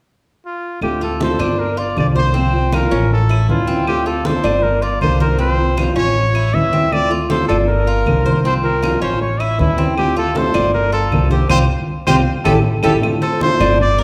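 A warm trumpet with light vibrato opens this danceable Cuban son-guajira groove at 0.5 s, joined at 0.8 s by a thumpy, pizzicato upright bass up front, a dark, boxy, thumb-plucked flamenco guitar with finger squeak, distant low-tuned congas and woody claves in the background, with a metallic, double-strung Cuban tres soon adding picked arpeggios, the band ringing in a reverberant recital hall as a band accent and drum fill lead into a brief new passage at 13.0 s.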